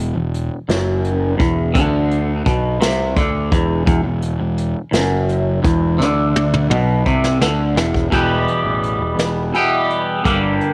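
A slow, rolling 6/8 pulse at 56 beats per minute, counted in dotted quarters with a straight feel, gives this short psychedelic rock fragment in E minor a mysterious, trippy sway. A vintage kit played with brushes carries the groove, with a punchy kick, a medium-tuned snare, hi-hat and toms, all sitting up front with a rolled-off top. A twangy, scooped electric guitar, played with the fingers and coated in phaser, states the riff cleanly over an E5 chord. Beneath it, a dark, round fuzz bass, overdriven and picked, adds a thick low foundation. A drum fill runs from 6.0 to 8.1 seconds and leads into a new section, where the harmony shifts to E minor. Light reverb and a small-room ambience frame the trio, which plays together from the first moment to the cut at about 10.7 seconds.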